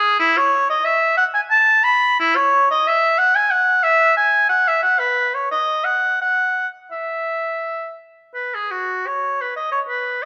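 A clear oboe opens alone, playing a baroque-style fantasia in E major that feels both serene and gently dance-like. The solo moves in a lilting 3/4 at roughly 83-93 BPM, with a free, rubato sense of time that lets the line breathe. Its melody ranges from E4 up to B5, and the instrument is tuned slightly low, to A4 = 438 Hz. The oboe sits up front yet carries a distant, roomy quality from the moderate recital-hall reverb, which gives each phrase a soft halo. This brief classical passage lasts about 10.3 seconds and is cut from a longer piece, with the opening idea returning at 8.4 seconds.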